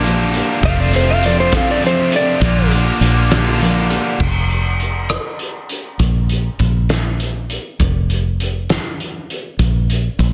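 Nostalgic and open-road in spirit, this short cut from a longer folk rock and heartland rock piece moves at an unhurried 67 BPM in a straight 6/8, with chords shifting from Bb6 to F6 and back. A biting, double-tracked overdriven guitar carries the riff up front while a woody, full-bodied steel-string acoustic with old strings is picked underneath, both playing until 4.2 seconds. A dark, clean lap steel, compressed and played with a slide, sings a brief melody high above from 0.7 to 2.7 seconds, and a grainy tube shaker sits close and dry in the background. The fingered electric bass is round and foam-muted, and a loose indie drum kit with a fat snare, punchy kick and dark cymbals pumps in its studio room, both up front. After 4.2 seconds the harmony drops away and only bass and drums continue to 10.3 seconds, all under light reverb and a dense, heavily limited modern master.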